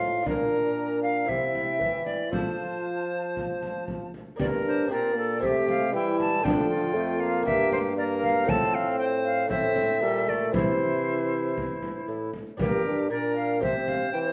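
A straight, even 4/4 pulse carries this rustic, solemn Renaissance-style consort dance, a fragment cut from a longer piece. A deep, distant frame drum struck with hard hands adds percussion, while a mellow bassoon with light vibrato holds a present bass line beneath a fingerpicked lute of gut double strings sitting delicately in the background. Above them, a pure-toned concert flute with gentle vibrato and soft attack carries the melody, and an airy tenor recorder with crisp chiff sits up front on a second line, its highs lifted, while a vintage-toned trombone adds bright accompaniment. The ensemble plays throughout, opening on Bb, C and F before turning at 4.4 seconds to a new passage that moves through G minor, D minor and A minor and comes to rest on C. A stone room reverb surrounds the consort, and the overall production feels dark.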